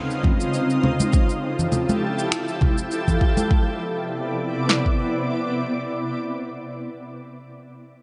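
A swung sixteenth-note groove at 101 BPM in 4/4 drives this short sunset chillout excerpt in C major, tuned slightly low at A4 = 439 Hz. Up front sits a layered electronic deep house kit with a deep kick and punchy snare, re-recorded in a small room, playing until 5.0 s. Beneath it, a tape-warm electronic blend of shaker, congas and finger snaps joins a bright, close acoustic conga part set in the background, and both stop at 3.5 s. A shimmering, ethereal pad of detuned sine tones with granular texture, octave-up shimmer, chorus and its own reverb holds slow-attack chords from C3 to D5. It moves from Dbmaj9 to Fmaj9, settles on Cmaj9, and rings on alone to 6.6 s. The mood is smooth and sunny, framed by a lush hall reverb and a soft, rounded top end.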